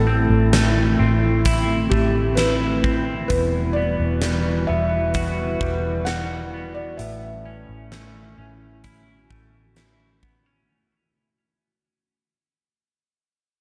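A soft, intimate felt-muted upright piano carries the melody in this melancholic, haunting dream pop excerpt, its mellow tone touched by subtle chorus and tape echo. Beneath it, a warbling, detuned tape-like pad holds sustained chords with a slow attack and long release, giving the music a nostalgic, lo-fi haze, while a bright, clean electric guitar plays picked arpeggios through the same gentle chorus and tape echo. A dark, round, foam-muted electric bass anchors the low end, and a huge arena drum kit enters at 0.5 seconds with hi-hat, a fat snare and a punchy kick in a pumping hall sound. The tempo is an unhurried 65 BPM in a straight 4/4, with the harmony moving from A minor to E minor add9 and landing on A major at 7.0 seconds. The whole mix is soaked in lush hall reverb and fades out from the start through 10.7 seconds, ending at 11.3 seconds as a fragment of a longer piece.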